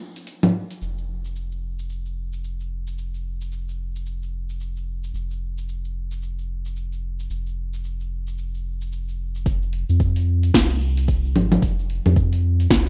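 A round analog bass sits up front through this earthy, mystical piece of organic downtempo, entering at 0.8 seconds with a dark, sustained tone, a fast attack and a sidechain pumping effect. Alongside it, a deep house drum kit, also up front, arrives first at 0.2 seconds, layering congas, shaker, metallic hats and a punchy snare, all overdriven and re-recorded in a large room, with a swung sixteenth-note feel. At 9.5 seconds the music moves into a new section as an electronic kick drum joins, its deep, overdriven thump also captured in a large room. The mix is dry and rough, like a home demo, and the passage is cut from a longer piece.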